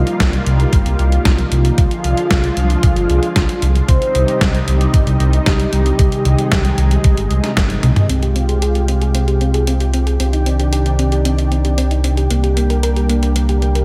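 This synthwave excerpt carries a moody, nostalgic air over a straight four-beat pulse, set in a big arena-sized space with a moderate reverb. A dark, detuned saw bass sits up front with a deep, rumbling, beating tone and tube saturation, pumping under the sidechain alongside a silky, string-like analog pad that holds sustained chords with ensemble chorus and vibrato. For the first 8.0 seconds a soft, octave-layered synth lead carries the melody, its mellow, rounded tone treated with chorus, delay and slapback echo. A detuned 8-bit drum machine plays hi-hat, a medium-tuned snare and toms throughout, while a thumpy, tape-warm electronic kick drives the opening until a drum fill at 7.8 seconds. From 8.1 seconds a gentle, tine-like thumb-piano-style pluck takes over with arpeggios under a filter sweep, moving through minor chords with add9 colours over a steady C in the bass.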